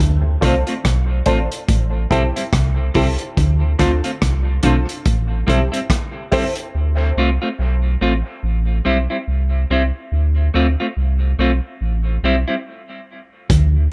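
A light reverb and small-room ambience give this dub reggae excerpt a close, intimate sound, and its meditative, hypnotic mood unfolds at 71 BPM in 4/4 with a swung sixteenth-note feel in D dorian. A round, sine-like sub bass sits up front throughout, deep and sustained under a slow alternation of Dm7 and Am7. A muffled, lo-fi vintage drum kit of hi-hat, punchy kick and rim click carries the groove with a rolled-off top until 6.7 seconds, then drops away, returning only for a brief moment at 13.5 seconds. A dark, fingered electric guitar riff lies in the background with an ensemble chorus. A clean, picked electric guitar plays up front as accompaniment through dub echo. A filtered chord stab built from detuned sawtooth and pulse waves adds plucky, decaying hits through phaser and dub echo until 6.5 seconds, and the music halts altogether at 12.7 seconds before its final brief return.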